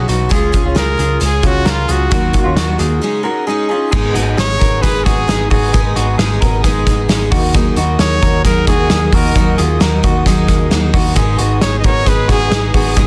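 Opening on a clear, punchy trumpet melody with tape echo over a shimmering picked twelve-string acoustic guitar, slightly broken-up electric guitar arpeggios, a dark, round muted electric bass and an up-front loose indie drum kit with dark cymbals, this bright, youthful jangly indie pop cut at 133 BPM passes a brief break at 3.0 seconds before a very quiet bowed string section adds soft sustained chords from 3.9 seconds as the harmony turns to G#m, all in a dry, dense, heavily limited mix.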